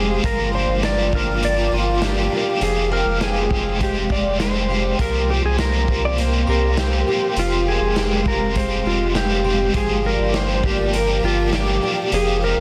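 A straight 4/4 pulse from a raw garage drum kit arrives at 0.2 s, its punchy kick, medium-tuned snare and hi-hat sounding saturated and gritty in a bright stone room, with a rolled-off top. This melancholic, haunting dream pop fragment, cut from a longer piece, sits on a deep, round sine sub bass that is up front and mellow. Above it, a clean electric lap steel carries the melody with a dark, compressed slide tone, volume swells and delay. A crunchy overdriven electric guitar plays a bright, picked accompaniment through tremolo and subtle chorus. A fingerpicked, plugged-in twelve-string acoustic spins shimmering, octave-doubled arpeggios through ensemble chorus and delay, while a granular cloud pad holds blurred, detuned, evolving chords in its own reverb. A very quiet, inharmonic FM synth chime rings between 0.8 and 10.0 s, over Gm7, Fmadd9 and C7sus4 harmony, all set in light small-room ambience within a dense, heavily limited modern master.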